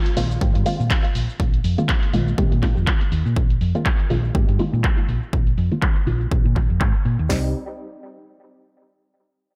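Deep house with a late-night, smooth mood and a swung 4/4 groove, cut from a longer piece. A muted, detuned sawtooth dub chord stab with phaser, tape echo and sidechain pumping sits over a round, dark hollow-body electric bass that sits up front, while one overdriven analog drum machine drives a punchy kick, snare, toms and hi-hat. A second dry drum machine layers cabasa, handclaps and low-passed hats, and filter sweeps run across the drums and the stab until the harmony moves from Bb9sus4 to Cm at 7.3 seconds.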